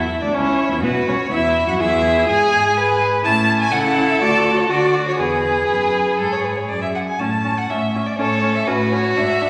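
Quick classical-period string quartet music in A major at 123 BPM, lively and spirited yet played with a rubato feel, this excerpt puts a rich, vibrato-laden first violin melody up front, joined at 0.3 s by a smooth, even second violin line, over a warm, focused viola accompaniment and a close-miked bowed cello bass, set in a wet scoring-stage reverb with vinyl crackle.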